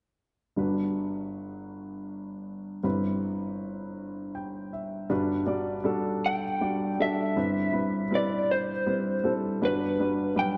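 Nostalgic and heartfelt, this slow folk fragment in G major sways in 6/8 at 53 BPM as an intimate, woody upright piano with audible action noise carries the accompaniment from 0.6 seconds, moving between Gmaj7 and Cmaj7/G. At 6.3 seconds a slightly broken-up electric guitar through a small old amp enters up front with a picked, compressed melody shimmering with tremolo. A lush scoring-stage reverb and a dark, warm production wrap the whole passage in a hazy glow.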